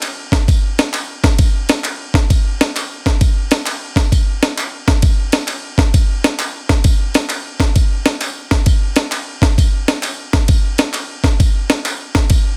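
A gritty, pitched-up, sampler-style jungle drum kit sits up front from the start, its thumpy kick, medium-tuned snare and ride cymbal compressed, while vintage, band-limited group handclaps, tambourine and egg shaker sit quieter underneath in this solemn yet fervent gospel groove at 132 BPM with a swung eighth-note feel, cut from a longer piece and heard dry through a dense, heavily limited modern master.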